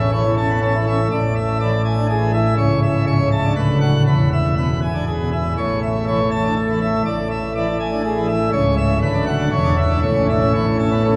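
A solo pipe organ sounds on full plenum from the first moment, its mixtures giving a brilliant, baroque-voiced tone with audible chiff at the start of notes. This is a jubilant, majestic classical organ toccata in A major, moving at 121 BPM in 3/4 with a straight feel and tuned to A4 = 443 Hz. The organ spans from C#1 up to A5, sitting up front while a wet cathedral reverb with a 6.4-second decay surrounds it, heard from further back in the room alongside some small room ambience. The harmony moves from A through E7/A, A/C#, Bm/D and E, returning to A at 5.6 seconds before passing through E7/A, C#m, Bm/D and C#m/E to land on A at 10.0 seconds. The organ plays alone throughout this 11.2-second cut from a longer piece.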